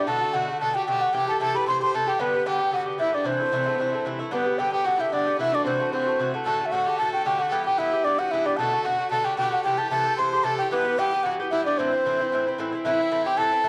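A light studio reverb and vinyl crackle frame this short cut from a longer Celtic reel, a dark yet lively and spirited folk tune with a gentle swing. A baroque flute carries the melody up front, its wooden, airy tone marked by vibrato and a crisp attack. Close beside it, a single fiddle plays a second line with a rich, nasal, earthy sound and an audible bow, touched by a slapback echo. Underneath, an Irish bouzouki provides picked accompaniment, its double strings giving a mellow yet metallic ring. All three play together from 0.0 to 13.7 seconds, moving through chords such as Bm7, Am7, G and F#m7b5, with the main phrase heard once and then repeated at greater length from 4.3 seconds.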